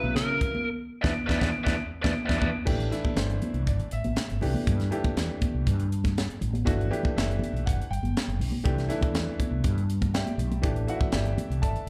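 Electric jazz fusion at 120 BPM in A dorian, intense and slick, cut from a longer piece and heard live through a club PA, where a biting, overdriven lead guitar carries the melody up front only until 2.5 seconds, a brilliant concert grand piano with deep bass and plate reverb accompanies, a round, dark fretless bass with ensemble chorus anchors the low end, thick-skinned congas sit close and soft-handed in the background, and a crisp, punchy kit entering at 0.2 seconds throws a drum fill and band accent before the harmony moves from C#m7 and E5 into Am7, Cadd9 and Gmaj7(no3), closing on A7sus4.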